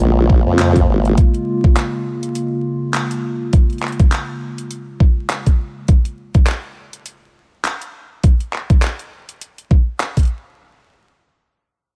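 A layered pop drum kit of handclaps and warm hi-hats re-recorded in a small room opens this swaggering, funky glitch hop excerpt at 102 BPM, swung on the 16ths in Bb minor, together with a saturated, compressed formant-sweep wobble bass that stops at 1.2 s and a warbly, nostalgic tape-like pad of detuned, ring-modulated Bbm7 chords that pumps to the sidechain and stops at 5.8 s. A knocking, overdriven electronic kick enters up front at 0.3 s, all of it in a dry mix dusted with vinyl crackle.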